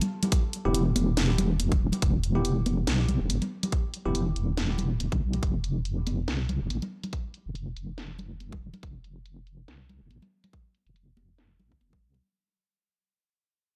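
Deep dubstep with a meditative, dark half-time swing, this fading excerpt sets a tight, up-front electronic kick and a garage kit of low-passed hi-hats and a cracking snare over dub-echoed congas, while a heavy, detuned wobble bass with tube saturation and a filter sweep enters at 0.7 s alongside bell-like electric piano stabs treated with phaser and dub echo until 4.2 s, in a dry, gritty recording with transformer saturation.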